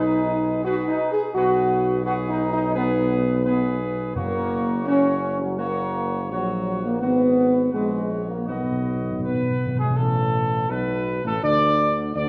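A dark, distant trumpet section carries the melody up front in this solemn, triumphant classical brass excerpt at 84 BPM in B major, tuned to A4 = 445 Hz. Beneath it, a punchy trombone section with light vibrato and a mellow French horn section in the background hold sustained chords over a roomy solo tuba bass. Round, soft-mallet timpani enter at 4.2 seconds and play a fill from 8.5 to 10.0 seconds, all within a wet scoring-stage reverb, with the recording topping out around 10.3 kHz.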